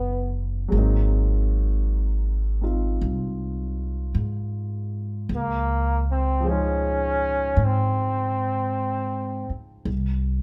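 Trombone, grand piano and upright bass all sound together from the opening moment of this slow, intimate and smoky jazz ballad fragment, its eighth notes carrying a gentle swing. The bright trombone takes the solo melody, punchy and forceful, with a touch of vibrato in a jazz style, and it stops at 9.5 seconds. Beneath it, the grand piano supplies warm accompaniment with a natural, intimate character, and the faint clatter of its action can be heard before it stops at 9.9 seconds. The pizzicato upright bass, with a woody tone from steel strings, sits up front and is the last to stop, at 10.4 seconds. The chords move from B6 through Ab7 to Dbmaj7, and the trio plays live in one large studio with a moderate reverb that gives the performance a shared sense of space.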